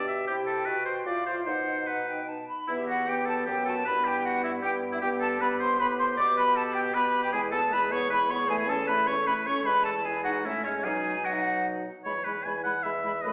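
Urgent and restless, this quick classical-period movement for wind quintet moves in a brisk triple metre with a straight feel, and it is cut from a longer piece. The silver concert flute carries the melody from 0.3 s, its pure, tongued tone touched with vibrato and set slightly distant. Close and up front, the bright oboe sings a second line with its own vibrato, while the clarinet adds accompaniment from the background. The French horn gives clear, vibrato-tinged support, and the bassoon anchors the bass with a light vibrato. The harmony turns from minor to major at 7.3 s before a brief closing section at 12.1 s, all of it bathed in a wet recital hall reverb.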